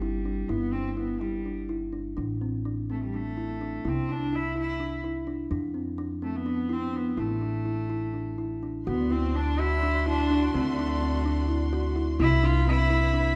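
A bowed solo cello leads this urgent, hypnotic piece of contemporary chamber music, carrying the melody with a nasal, earthy tone and light vibrato, placed up front. It moves in an uneven 7/8 metre with a straight feel at 252 BPM counted in eighths. Alongside it, a kalimba plucked with the fingertips spins mellow, soft arpeggios with a vintage, band-limited sound, while a pizzicato upright bass on steel strings gives a bright, up-front foundation. The harmony moves through G5, Am, Cadd9, F5 and A5, and at 8.9 seconds a chamber string section enters with focused, bowed sustained chords over D7 and then Cmaj7 until the close at 13.4 seconds. A moderate recital hall reverb with a decay of 1.8 seconds gives the ensemble a natural sense of space in this brief cut from a longer work.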